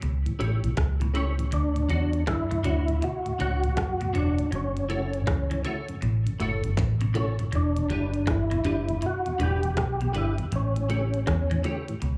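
Roots reggae with a laid-back, hypnotic swing, cut from a longer piece and heard live through a club PA, where a dark, foam-muted fingered bass and a tight, clicky electronic drum kit sit up front beneath a percussive tonewheel organ melody with key click and fast rotary speaker, while a mellow organ on slow rotary, a twangy clean guitar with dub and slapback echo, and a hollow-body guitar playing arpeggios in the background fill out the chords, with a drum fill at 6.8 seconds.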